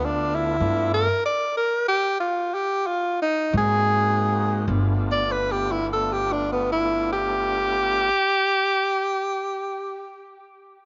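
A slow 12/8 blues with a straight feel eases back through its first 4.7 seconds, gritty and laid-back, as a warm, close-miked tenor saxophone takes a jazz-style solo up front, with vibrato and scooped notes. Beneath it, a thick, lightly overdriven tonewheel organ sustains chords through a slow rotary speaker, moving from G9 to Ab9 and back, while a woody, bright pizzicato upright bass sits forward in the mix. Organ and bass stop at 8.1 seconds, leaving the saxophone to carry on until 10.2 seconds in this cut from a longer piece, all framed in light reverb and a soft-topped sound.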